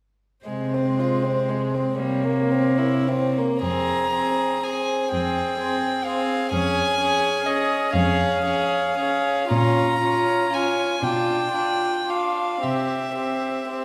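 A floating, pure first violin carries the melody up front in this solemn, elegiac slow movement for string quartet in F minor, played sul tasto with a soft attack and a smooth top in 6/8 at a rubato 35-43 BPM counted in dotted quarters. Close beside it, a second violin with light vibrato and an airy bow shapes an intimate second line, while a rich viola fills in the accompaniment and a rich cello anchors the bass, all four bowing from 0.5 to 13.8 seconds. The wet recital hall reverb lingers over a faint mains hum, and after a brief opening idea a longer passage begins at 3.6 seconds and closes on a C chord as the longer piece carries on past the cut.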